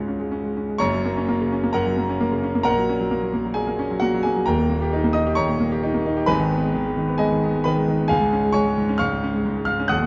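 Classical virtuoso piano study in F# major at 132 BPM in 4/4, played with a flexible rubato feel and a sparkling, heroic mood; it is cut from a longer piece. A clear concert grand piano plays solo throughout the 10.1 seconds, spanning D#1 to F#6 with deep bass and a smooth, vintage tone placed up front, moving through C#, F#, F#/A#, D#7, G#m and back to C#. Light reverb and a dark, warm production frame the instrument, and the tuning sits at A4 = 444 Hz.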